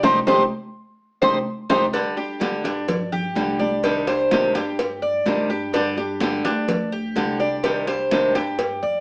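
Heard through a small speaker with a wet studio reverb, this danceable Cuban son and guajira excerpt at 126 BPM opens with an airy, distant, tongued concert flute solo with expressive vibrato over a band accent until 1.9 s, while a bright, fingerpicked flamenco guitar and a metallic, double-strung Cuban tres play up front, a woody, growly pizzicato upright bass holds the low end, round, low-tuned bongos and cowbell sit in a small room, and thick-skinned, high-tuned congas sound in a live room as the chords move between Cmadd9 and G5.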